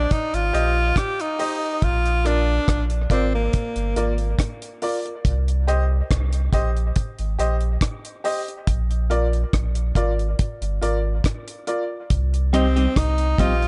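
A breathy, intimate tenor saxophone with dub echo opens over a round, up-front sub bass in this meditative, heavy dub reggae piece at 70 BPM in C minor, soon joined by a dry, dark drum kit of kick, hi-hat and rim click and by woody, slightly detuned upright piano stabs with dub echo, as the harmony moves between Cm and Bb, before the saxophone drops out at 4.2 seconds and returns at 12.5 seconds alongside a clean, compressed electric guitar with dub echo.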